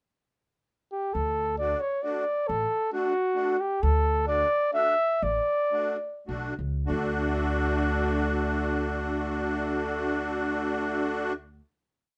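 A mellow flugelhorn leads this bouncy, jolly alpine dance-band piece in 3/4 and D major, playing a classical-style, motif-based solo melody in period phrases. Up front alongside it, a reedy, shimmering musette accordion supplies off-beat triad chords, while a woody pizzicato upright bass marks root and fifth on the main beats. The tempo moves between 96 and 136 BPM and slows from 3.8 seconds into the final D major chord at 6.9 seconds, all within a light reverb.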